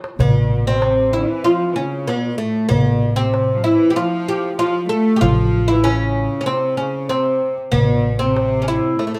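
Stately and passionate, this brief Arabic maqam ensemble passage in A maqam saba moves at 95 BPM in a straight 4/4, tuned to A4 = 441 Hz and cut from a longer piece. A darbuka with a clay shell and natural skin opens with a drum fill at 0.0 seconds and then sits in the background under soft hands. From 0.2 seconds a bright, plectrum-plucked fretless oud with double strings carries the melody up front, over a floating bowed cello section played sul tasto and a dark, woody pizzicato upright bass holding a low A, all set in light reverb.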